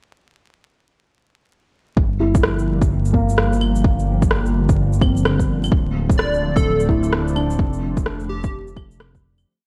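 Over a bed of vinyl crackle, this rainy, nocturnal future garage piece brings in an overdriven, muffled two-step kick and a dark, rumbling detuned saw bass at 2.0 seconds. They are joined by a skittering, shuffled beat of gritty electronic shaker, rim click and claves, a breathy chorused pad with sidechain pumping, and scattered notes from a felt-muted, boxy upright piano with tape echo. A punchy, bright unison lead enters at 6.2 seconds for short catchy phrases as the track fades out from 7.0 seconds.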